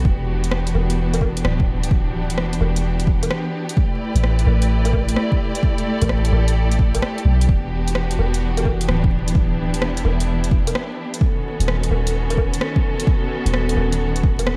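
Muted, veiled strings with vibrato open this nocturnal, wistful future garage excerpt, their lush bowed chords pumping against a soft, round 808-style bass and a punchy, overdriven electronic kick from the very start. At 0.4 seconds a layered deep house kit joins with swung hi-hat, rim click and woodblock, also overdriven and set in studio reverb, as the harmony moves from Em9 through A7sus4 to B9/D#. Vinyl crackle and light digital ambience lend the whole excerpt a dusty late-night haze.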